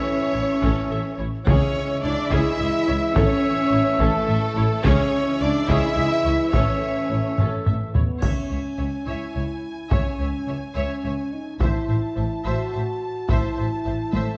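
A dark, reverberant scoring-stage sound frames this heroic, relentless stretch of epic orchestral film score in a straight 6/8, cut from a longer piece. Hard-stick taiko drums drive it with a vintage, band-limited punch, while a lush string body carries the melody, second line and bass beneath soft-attack French horns: smooth chamber violins, background symphonic violins, close, expressive violas, even cellos and distant double basses. Mellow trombones, a background tuba and a clear trumpet stabbing on a single note play on until about 8 s, with round soft-mallet timpani touching in briefly, and a taiko fill leads into a second section at 8.2 s that opens with a faint triangle.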